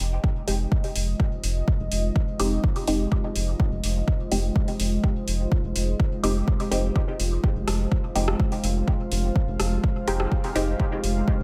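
A dry excerpt of deep, cavernous dub techno at 125 BPM in F minor, resting on an Fm7 chord, where an overdriven electronic kick sits up front beside a round, wave-folded, sidechain-pumped analog bass on F1, an overdriven house kit adds metallic hi-hats and rim clicks, a muted, detuned filter-pluck chord stab enters at 0.5 seconds through phaser, sidechain pumping and dub echo, and a warbling, vintage pad with chorus, its own reverb and sidechain pumping sustains dark chords throughout.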